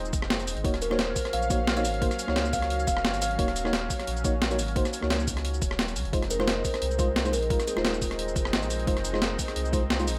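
The recording sits in a light digital reverb, with the drums up front in a small room ambience. This is a melancholic, rolling piece of liquid drum and bass with a slight swing on the sixteenths, moving between Fm7 and Ebm7. A gritty, compressed, tape-coloured breakbeat kit of hi-hat, rim click, shaker and a medium-tuned snare is layered with an overdriven, knocking electronic kick, while a deep, round sine sub bass holds the low end. A dark, soft FM electric piano with chorus and digital delay plays the accompaniment, and a lush, airy, bright unison pad of detuned sawtooth and square waves sustains chords with chorus and sidechain pumping. A woody, hollow kalimba carries the melody in two close-miked, ringing phrases, the first from 0.8 to 3.7 seconds, with digital delay on its thumb plucks.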